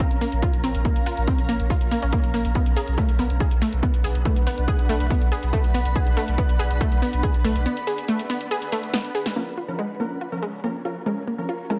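Driving peak-time techno with an intense mood, cut from a longer piece, where a heavy, layered, up-front kick and a punchy, tape-warm analog drum machine on hi-hat and snare push beneath a round sine sub bass and a bright, detuned sawtooth pluck riff with chorus, overdrive and digital delay, over a cloudy, blurred granular pad, until a break opens at 7.7 s and an aggressive, thick rave stab with dub echo arrives at 9.4 s.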